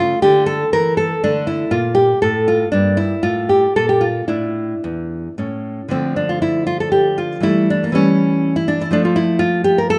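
A flowing triple metre drives this baroque-style classical dance, its pulse moving with rubato between 109 and 124 BPM in D minor. A solo nylon-string guitar carries the whole 10-second excerpt, fingerpicked and bright, sitting up front in the mix and ranging from E2 to Bb4. The mood is introspective, with the harmony passing from A5 and D5 through Gm and Asus4 before resolving to A at 5.4 seconds. A repeat of the opening section begins at 5.9 seconds on Dm, moving through A7/E to a closing Fmaj9. A moderate recital-hall reverb surrounds the instrument, lending a sense of space to this fragment cut from a longer piece.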